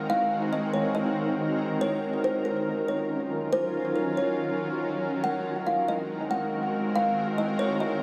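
A bright, shimmering ambient pad with chorus, octave-up shimmer and a detuned, warbling vintage haze sustains Ab9 and Ebm9 chords under a woody, hollow kalimba melody with tape echo, giving this melancholic, dreamy 8-second hip hop excerpt at 140 BPM in a half-time feel, all steeped in a long plate reverb.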